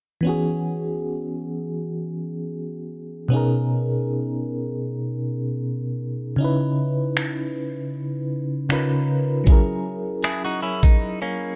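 A tremolo-laden FM electric piano opens this tender, romantic contemporary R&B passage at 0.2 s. Its fast-attack, decaying tones carry a noise layer and sit up front as it moves through E6, Bmaj13, C#m9, C#13 and F#7. The pace is a slow 78 BPM in 4/4 with a light 16th-note swing. At 7.2 s a produced, electronic drum kit arrives with finger snaps and a knocking kick, re-recorded in a small room and placed close to the listener. From 10.2 s a clean, picked electric guitar, recorded direct and compressed, adds warm arpeggios treated with tape echo. Light digital ambience frames the whole, and the passage is cut from a longer piece, ending on a short break.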